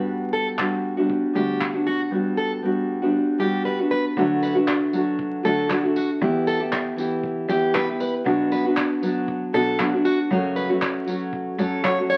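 A lightly swung 117 BPM groove in 4/4 carries this easy-going, heartfelt acoustic pop excerpt in D major, where an up-front fingerpicked nylon-string guitar with a deep classical tone and finger squeak leads the accompaniment, a picked plugged-in steel-string guitar adds warm, concert-style arpeggios from 0.3 s, a smooth bowed cello with vibrato holds the bass in the background, and a cloth-damped, thuddy drum kit with tight kick, handclaps and tambourine enters at 0.6 s, all moving from Gmaj7 to D, Em, Bm and F#m through moderate studio reverb and the crackle of a very old 78 rpm record.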